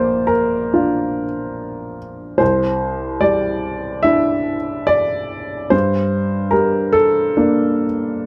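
Neoclassical minimalist piano at a rubato 72 BPM in 4/4, hopeful and peaceful, in which a solo upright piano, woody and intimate with its action noise audible and placed up front, spans Bb1 to E5 across Bb, Cadd9 and Gmadd9 chords in this 8.3-second fragment of a longer piece, captured as a dry, close 1970s-style studio recording with small room ambience.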